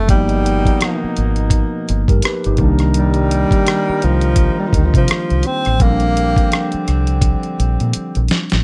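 R&B and neo-soul in a smooth, relaxed mood at 84 BPM, this short section from a longer piece in Bb major swings its sixteenths gently as a breathy, close-miked tenor saxophone carries an intimate, whispered jazz melody with vibrato until 6.9 seconds. An overdriven electric piano adds gritty combo-amp chords over a round, foam-muted fingered bass, while a tight horn section punctuates with smooth-topped stabs bathed in slapback echo and plate reverb. A compressed, sampler-style soul kit with a thumpy kick and rim clicks sits up front and closes with a drum fill from 7.2 seconds, as the harmony moves from G7alt through Cm9 to Bb69.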